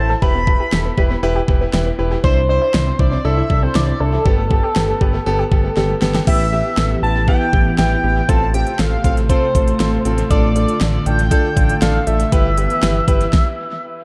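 Echo-heavy and bathed in spring reverb, this cool, melancholic synth-pop excerpt at 119 BPM sets a bold, retro octave-doubled lead melody over a clear concert grand piano, a round, nasal analog pluck playing arpeggios until 6.2 seconds, a dark, gliding synth bass and an up-front pop drum kit with knocking kick, fat snare and crisp hats, while a swirling phased analog pad joins at 6.7 seconds before everything but the lead stops at 13.3 seconds.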